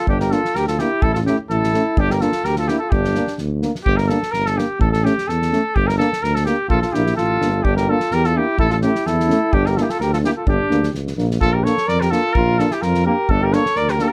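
A warm, up-front trumpet carries the melody of this restless, virtuosic Balkan brass band piece in G Dorian sharp 4 at 127 BPM in a straight 2/4, joined at once by a smooth, mellow flugelhorn on a second line that drops out at 3.4 seconds and returns at 6.7 seconds, while a soft-attacked tuba anchors the bass up front, an acoustic drum kit played with bundle sticks adds a fat snare and tight kick, and a background euphonium and close-miked trombone fill in the accompaniment, with light vibrato on the trumpet, flugelhorn, euphonium and tuba, classical-style playing throughout, light reverb and close, detailed microphones.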